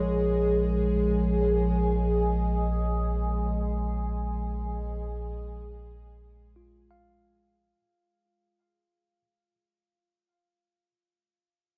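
Drifting in free time, this weightless ambient fragment, cut from a longer piece, sets mellow tine electric piano arpeggios, clean and heard through built-in speakers with phaser and diffuse delay, over a deep, round sine sub bass and an up-front drone whose wave-folded, resonant overtones sweep past a moving notch under chorus. Everything sits in a vast, echoing space with a huge reverb tail. A fade-out begins at 1.7 s, and the piano lingers alone until 9.5 s.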